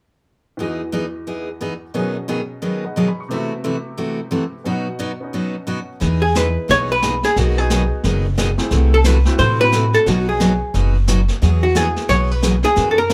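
Down-home and cheerful, this western swing excerpt moves at a brisk 178 BPM in 4/4 with a lilting swing on the eighth notes, centered in E major. It opens with a clear, open upright piano and a bright, full-bodied picked steel-string acoustic guitar, the guitar sitting up front, as the harmony moves through Emaj7, B6, Am6/C and B. At 6.0 seconds a woody, thumpy upright bass with gut strings enters up front alongside a vintage brush drum kit, whose distant, roomy snare and hi-hat sound warm and rolled-off on top. Moments later, at 6.2 seconds, a dark, clean hollow-body archtop guitar takes the melody in a compact middle register, picked and placed up front. The same chord cycle repeats beneath it before settling on Eadd9, all wrapped in a light reverb.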